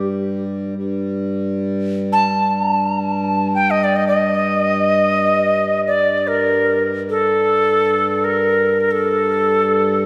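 World meditation music in free time and G hirajoshi, this haunting short excerpt sets a pure, woody cedar flute melody with vibrato and tongued notes up front over a reedy, breathing harmonium drone on G2 in a boxy small room, while a soft, ringing quartz singing bowl struck with a felt mallet carries slow beating in the background until 1.3 seconds, all bathed in the wet reverb of a concert hall.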